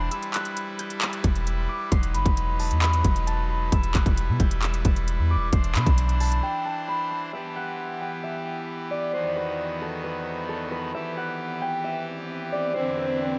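Melancholic and dark, this excerpt of half-time trap hip hop drifts through a dreamy mix soaked in a huge ambient reverb. A mellow, thumb-plucked concert harp carries the melody throughout, its ringing notes softened by a low-pass filter and trailed by delay. Beneath it, a pipe organ on a brassy trumpet stop holds bright, baroque-voiced chords with an audible chiff. A deep, boomy, sine-like 808 bass and an electronic trap kit with crisp hats and handclaps sit up front, and the hard-clipped kick joins at 1.0 seconds. Bass and drums drop out at 6.4 seconds, leaving harp and organ to cycle through Em, B/E and Cadd9/E, until a background electronic swell enters at 12.1 seconds.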